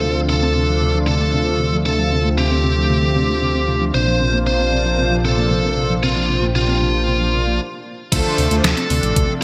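A straight 4/4 pulse at 115 BPM drives this cinematic, nocturnal synthwave passage in D minor, cut from a longer piece. A deep, rumbling detuned saw bass with tube saturation anchors the harmony as it moves from Dm7 to Bbadd9, beneath a lush, thick unison pad treated with chorus, phaser and sidechain pumping. Up front, a biting, overdriven electric lead guitar carries the melody through digital delay, while a soft, round pluck plays arpeggios in the background with 12-bit sampler grit. Mellow synth brass adds brassy, ring-modulated stabs, and a filter sweep on an analog polysynth runs through the opening before a brief stop from 7.6 to 8.1 s. At 8.1 s the drums arrive: an overdriven, knocking electronic kick alongside a detuned 8-bit drum machine with crash, hi-hat and a medium-tuned snare, all set in moderate plate reverb with bright 1980s-style digital production.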